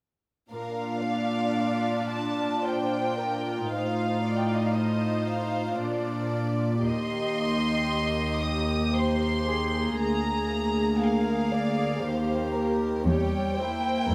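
From 0.5 s a string ensemble enters together in a tender, lyrical classical passage in Bb major and 3/4 at a rubato 57 BPM: the rich first violins carry the melody with light vibrato over an intimate, close second violin line, with pure, floating violas in accompaniment and an up-front warm cello bass, all four sections bowed sul tasto with soft attacks in a moderate scoring-stage reverb, in a passage cut from a longer piece.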